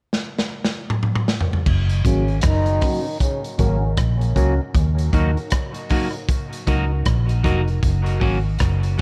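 A crunchy, saturated breakbeat drum kit opens this hazy, laid-back dub reggae excerpt with a gritty fill, its dark cymbals and tight kick sitting up front before a round, foam-muted vintage electric bass arrives at 1.7 seconds. From 2.0 seconds, a clean picked electric guitar and hollow, percussive organ stabs with chorus join under low-pass filtering and dub echo, while a veiled, cup-muted trombone section adds a brief echoed second line until 3.9 seconds. The swung, echo-heavy mix carries a filter sweep through its middle stretch and sits in light reverb.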